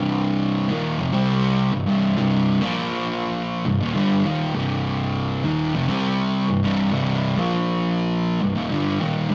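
A rough rehearsal-room recording with tube saturation and a moderate stone-room reverb frames this short, sludgy metal fragment, cut from a longer piece. A lone electric fuzz guitar, picked, distorted and double-tracked, sits up front across the full 9.3 seconds, its warm tone spanning low to middle register. The ominous riff moves between C minor and B-flat power chords, returning to C minor at 8.4 seconds.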